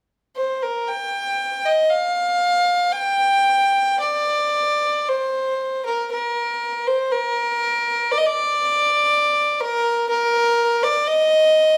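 Celtic folk in a slow, free-flowing 3/4 at about 59 BPM, this mournful, longing fragment of a longer piece is tuned to A4 = 442 Hz and carried by a single bowed fiddle playing solo from 0.4 to 11.8 seconds. The fiddle sits up front with a biting, nasal, earthy tone, moving between Bb4 and G5 with uneven, rubato phrasing, and a new passage begins at 4.0 seconds. A moderate large-studio reverb gives the live-room performance a sense of space.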